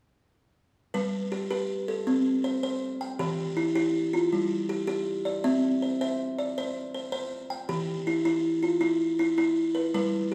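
In a straight 12/8 at 107 BPM, this hypnotic Southern African traditional excerpt features a single buzzing kalimba playing up-front, woody, bright arpeggios from 0.9 to 10.3 seconds over G, C5, Em, G5 and C chords, its short plucked notes ringing airily into a wet recital-hall reverb.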